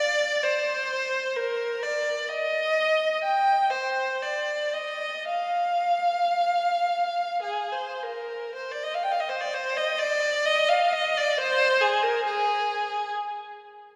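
Drenched in a long church reverb, this serene classical fragment features a single rich, focused bowed violin with vibrato, singing unaccompanied in a lyrical, freely expressive rubato over a triple metre. The violin plays alone from the opening until 13.1 seconds, moving into a second passage at 8.6 seconds as its line lingers in the resonant space.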